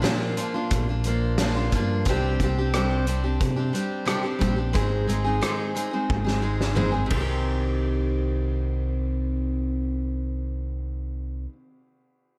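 Folk rock with a heartland rock lean, this dusty, reflective excerpt pairs an up-front picked steel-string acoustic guitar of auditorium character with a round, amped electric bass entering at 0.7 seconds, while a loose, roomy indie drum kit with dark cymbals, a fat snare and a punchy kick plays a fill from 6.1 seconds before dropping out at 7.3 seconds, all set in a lush hall reverb that gives a big arena sound.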